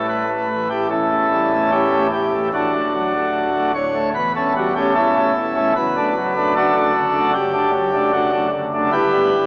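Serene and reverent, this brief cut from a longer classical chorale moves at about 75 BPM in 4/4 with a rubato feel, settling in D major as it passes from A7 to D and on toward Em/G. A solo pipe organ principal chorus sits up front across the full 9.5 seconds, its full baroque voicing ranging from D1 to C#5, with audible chiff at the start of its notes. The sound carries a long, wet church reverb and the worn, warbling pitch drift of old cassette tape, heard through a small speaker.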